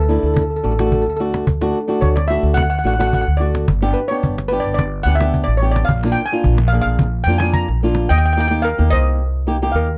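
A steel pan and an upright bass open this sunny, festive calypso excerpt together, with the pan carrying a solo melody over the first 8.1 seconds. Played as double seconds with hard rubber sticks, the pan rings metallic and shimmering, sitting bright and up front. Beneath it, the pizzicato upright bass on gut strings gives a woody, thumpy low end, while a fingerpicked flamenco guitar adds warm acoustic accompaniment up front in the mix. A snappy cajon with snares keeps a straight four-beat feel until it drops out at 8.1 seconds, as the harmony moves from D through G and Bb7 to an Eb chord for a brief closing passage. The sound is dry and close, like a 1970s studio, touched with light reverb.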